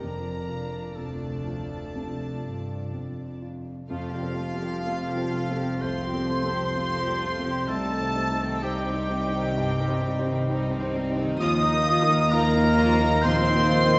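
Set in a reverberant recital hall with a dulled top end, this excerpt of a cinematic, emotional film score moves in a rubato 4/4 with a moving, longing mood. A clear, floating violin section carries the melody from the start, joined briefly by a distant, folk-style duduk with scooped notes until 3.4 s. Beneath them sit an intimate chamber violin second line, a dusky viola section, short-sustained grand piano, and a bass of sul tasto cellos and double basses. At 3.9 s an airy silver flute, a roomy oboe and a mellow clarinet add second lines, while a very quiet French horn section holds dark sustained chords.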